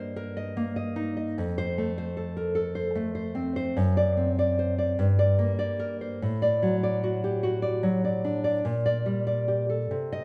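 Wistful and passionate, this short fragment of a longer romantic work features a lone nylon-string classical guitar heard from 0.0 to 10.2 seconds. The pulse moves slowly in a lilting compound metre, stretched with expressive rubato. The guitar sits up front with a warm, thumb-plucked tone, spanning from deep bass notes to a singing upper register. Its harmony drifts through E-flat over G and F before settling into a minor home from 3.8 seconds, leaning on D7 over F-sharp and resolving to G minor around 5.0 seconds. A moderate reverb suggests a church or concert hall, giving the instrument a gentle, resonant halo.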